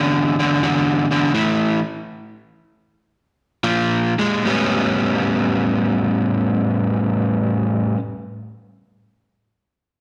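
Blues with a gritty, laid-back mood at a swung 71-87 BPM in A mixolydian, tuned slightly flat to A4 = 437 Hz: a lone overdriven, compressed electric guitar sits up front with slapback echo, moving through E5, A5, Bb5 and A9 chords as the tempo slows and the music stops from 1.4 to 3.6 seconds, all heard as a live club gig through the venue's PA with moderate room ambience and recital-hall reverb in this cut from a longer piece.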